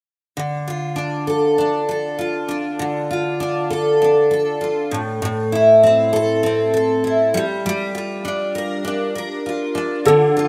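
A wistful, tender pop excerpt in a straight 4/4 feel, cut from a longer piece. A picked steel-string acoustic guitar carries the accompaniment from 0.4 seconds, double-tracked and up front, with a full-bodied dreadnought tone and audible finger squeak as it moves through Dm, Am and Gm7. At 10.1 seconds a dark upright piano enters briefly with the melody on a single A4, its mellow, woody, intimate sound carrying audible action noise and a touch of tape echo. A moderate, lush hall reverb surrounds the parts, and the mix has the rough character of a home demo.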